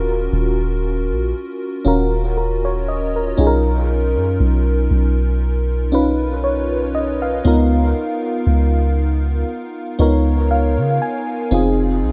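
An echo-heavy mix with light reverb frames this short cut from a longer contemporary R&B piece, a slow, longing late-night groove at 59 BPM in 4/4 with a gentle swing on the sixteenths. An FM electric piano layered with a soft pad carries the accompaniment throughout, its lush, dreamy, slightly detuned tone sitting up front and coloured by chorus and dub echo. Beneath it, a soft 808-style bass plays for the full length, deep and round with a dark, decaying sine body. The harmony drifts through Ebm9, Bmaj9#11 and Db13 before touching Fm7 at 11.5 seconds. Near the close, the electric piano adds a fill from 9.5 to 11.5 seconds.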